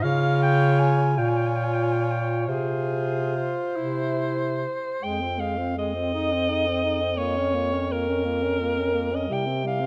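Classical and lyrical, this yearning, melancholic passage for single-reed quartet in F minor moves in a slow, rubato 6/8, cut from a longer piece and heard across just under 10 seconds in a concert hall with moderate reverb. A bright alto saxophone with vibrato and a smooth top sits up front on the second line, while a mellow, soft-attacked clarinet carries the melody from a distant, roomy place in the background. A warm tenor saxophone fills in the accompaniment above a bass clarinet that stands prominently up front, as the harmony moves from Db through Bbm6 to C, then turns to Fm at 5.0 seconds before settling on C near the close.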